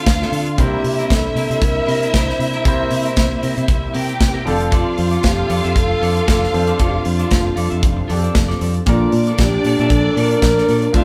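An airy, expressive alto flute carries the melody from 0.6 s in this glamorous, danceable disco excerpt at 116 BPM with a light 16th-note swing, set over a punchy, up-front drum kit and fingered electric bass, while a lush, distant violin section adds a second line, a clear grand piano with audible action noise and a slightly broken-up, picked electric guitar sit in the background, and a very quiet, mellow French horn section holds sustained chords through Dm7, C7, F6 and Bbmaj7 in a moderate studio reverb that sounds like a band playing live in one room.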